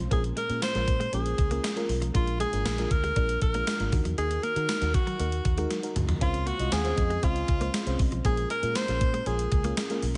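1980s-style pop with an uplifting, glossy mood, where a bright alto saxophone with light vibrato and scooped notes carries the melody up front over a lush, dreamy FM electric piano with chorus, a round, punchy muted fingered bass, a clean, compressed electric guitar riff in the background, and a thumpy gated digital drum machine with a gated-reverb snare that plays a fill at 5.7 seconds, after which a crystalline synth bell with phaser and delay adds a second line from 6.2 seconds in this excerpt from a longer piece.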